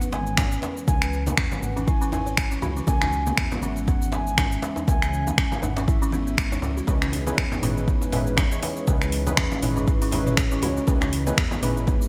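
A swung 120 BPM afro house groove in C# minor sits on an overdriven, deep electronic kick and an up-front afro-pop kit of cabasa, finger snaps, metallic hats and toms with gated reverb, while bright vintage congas sit in the background and a very quiet djembe adds hard-handed texture. A rumbling detuned saw bass and a moody, chorused analog pad hold a single C#m7 chord, both pumping with the sidechain, as a woody, buzzing kalimba plays delayed arpeggios throughout. An airy, distant jazz flute carries the melody with delay until 6.6 seconds, and round, chorused analog key stabs with a filter sweep enter at 6.9 seconds, giving this hypnotic, earthy excerpt a bright 1980s-style digital sheen.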